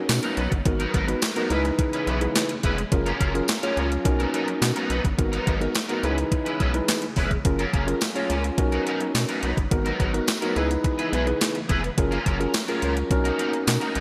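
This smooth, danceable slice of early-eighties boogie funk opens on a mellow tine electric piano and a swirling, phased string machine laying sustained chords, with the rest of the band arriving at 0.1 seconds. An overdriven, sampler-style drum machine sits up front with a thumpy kick, medium-tuned snare, hi-hat and handclaps, all treated with gated reverb. Underneath, a rubbery, bouncy square-wave bass supplies the low end with a resonant filter pluck. An electric guitar at the edge of break-up plays a twangy, picked riff thickened by ensemble chorus, while a jingly tambourine glints very quietly in the background until 13.8 seconds. The harmony cycles through Bmaj7, G#m9, C#m7 and F#maj7, all set in a moderate plate reverb with bright, 1980s-style digital production.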